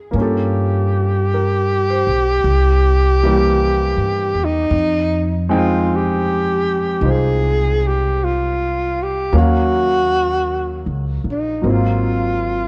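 A baby grand piano opens this wistful, intimate jazz ballad fragment, soon joined by a woody, plucked upright bass and a breathy alto saxophone that carries the solo melody up front with vibrato, subtone and scooped notes. Over a slow, swung pulse, the piano comps through a minor-key progression while the bass anchors the low end. Light reverb and the sound of worn cassette tape, with its warbling pitch drift, give the brief clip a faded, nostalgic character.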